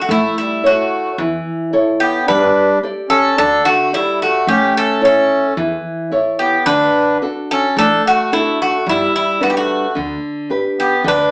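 Relaxed and hopeful, this short Greek folk passage, cut from a longer piece, moves at 110 BPM in a straight 4/4 with a Greek bouzouki band feel. The bouzouki carries the melody up front with a bright, metallic, picked tone from its double strings, some of them octave-doubled. Beneath it, a reedy single-reed accordion with dry tuning plays a clear second line, while a fingerpicked nylon-string guitar, small-sounding but close, supplies the accompaniment with the glow of fresh strings. An upright bass played pizzicato adds a woody, growly, thumpy foundation low in the mix. The chords move from A to Gsus2, back to A, then D at 6.7 seconds and G at 8.9 seconds, and the band sounds as if playing live in one room, with a wet studio reverb and a small speaker character.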